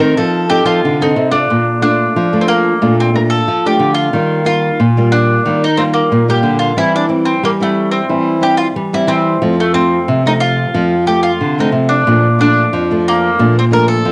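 A straight 4/4 samba and choro groove at 91 BPM in Bb major sets a sunny, playful mood for this short cut from a longer piece, with a woody, double-strung picked mandolin carrying the melody up front, a small, fingerpicked nylon-string guitar supplying accompaniment, and a second nylon-string guitar with fresh strings and audible finger squeak holding the bass, the two upper parts colored by cassette tape in a homemade recording with moderate studio reverb, as the chords move from F7 through Bbmaj7, Ebadd9, C/E and F back to Bbmaj7.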